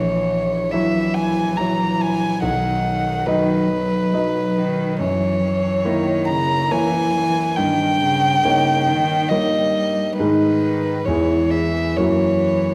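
A wet recital hall reverb with a 1.6-second decay surrounds this short, tender passage cut from a longer piece, a slow romantic movement for piano quartet in 3/4 at 69 BPM, played with lyrical rubato. The violin carries the melody up front, a single close, intimate player using an airy sul tasto bow, soft attacks and light vibrato that give it a warm glow. Beneath it, one bowed cello shapes a second line in the same hushed sul tasto manner, softer in level and equally intimate. The concert grand piano, also up front, supplies the accompaniment with a clear, open tone and deep bass that anchors the ensemble. All three parts play together through the full 12.7 seconds, moving through harmonies such as F#7/A#, B, D#7/G and G#m before returning to F#7 at 12.0 seconds.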